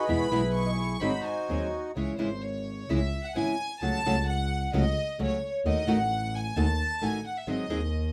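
An elegant, passionate tango in C# harmonic minor opens with a reedy, airy bandoneon carrying the melody alongside a soft-attacked, floating violin section on a second line, all set up front in a wet club reverb. Beneath them, a bright, fingerpicked nylon-string guitar supplies accompaniment while a single bowed double bass, dark and expressive with vibrato and portamento, holds the low end. The pulse sits around 130 BPM in 4/4 but is played with a rubato feel, moving from E through G#7 into C# minor. The bandoneon drops out at 1.9 seconds, and from 2.0 seconds the pure, bowed violin section takes the lead as a solo voice over F#m/C#, D#dim and a return to G#7. This short passage, cut from a longer piece, closes at 8.1 seconds with the violins and bass still sounding.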